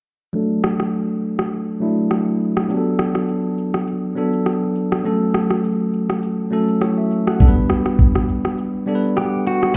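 A bell-like tine electric piano opens this sunny, joyful afrobeats fragment at 102 BPM in D major, moving through D, Bm7, F#m and G under a low-pass filter sweep. At 0.6 s a produced electronic kit joins, with a knocking kick, rim click and shaker in a light sixteenth-note swing. During a break with an electric piano fill from 8.6 s, a bright, picked, compressed clean electric guitar enters at 9.2 s with a brief melody, and the whole mix sits in lush hall and club reverb, sounding muffled as if heard through a wall.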